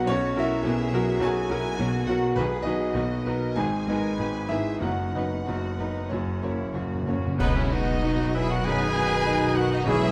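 A rubato 4/4 pulse of about 91-107 BPM carries this passionate, lyrical romantic movement in B major, where a bright, up-front concert grand piano with deep bass sings the melody alongside intimate sul tasto chamber violins; lush symphonic violins, a very quiet viola section, smooth cellos and distant double basses fill out the strings; soft-mallet timpani enter at 2.4 s; a cymbal swell, dark clash cymbals and concert bass drum arrive at 4.8 s; and at 7.4 s a band accent brings in pure flute, mellow clarinet, vintage cor anglais, clear trumpet stabs and roomy trombone chords, with French horns adding sustained chords before the cut, all under light reverb.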